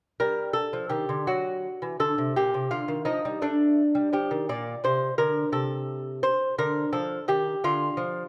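Heard in a moderate recital-hall reverb, this short fragment of a grave, introspective baroque-style classical dance in G minor, tuned to A4 = 441 Hz, features a solo lute, up front, fingerpicked and delicate on nylon double strings with some octave-doubling, playing from 0.2 to 8.3 s in a rubato 6/8 at about 56 BPM as the harmony moves from G5 through D9, Gm/Bb and Bb, then a brief unharmonized moment, to a closing Ebmaj9#11/D.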